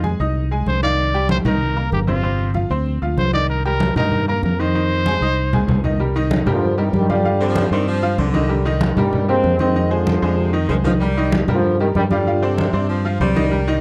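Salsa in C minor at 192 BPM, fiery and driving, cut from a longer piece, with a dry, close 1970s-style studio sound. A bright, vibrato-laden trumpet carries the opening melody over a woody, slightly detuned upright piano with audible action noise, a round, punchy fingered electric bass up front, and ringing, medium-tuned congas played with soft hands that sit distant in a large room. A drum fill at 5.1 seconds leads into the second section, where a mellow, tight trombone section takes the melody from 6.5 seconds and a clear saxophone section adds a second line from 7.4 seconds, over chords cycling through Fm7, Cm9 and G7sus4.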